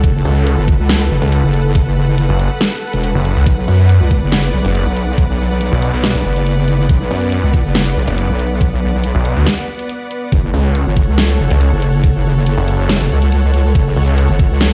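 A half-time 4/4 groove at 140 BPM in F# minor drives this menacing, heavy wobble dubstep excerpt: a knocking, tape-warm electronic kick and a dubstep kit with a huge snare and hi-hat anchor the beat. Up front, a resonant, saturated wobble bass with chorus and overdrive plays alongside a growling, snarling distorted saw bass with a moving notch, while a lush supersaw pad holds slow-attack chords roughened by vintage 12-bit sampler grit and sidechain pumping. The harmony moves from F#m to Bm, then returns to F#m at 10.3 seconds after a brief break at 9.5 seconds, all heard as if played on a big sound system in a bare stone room.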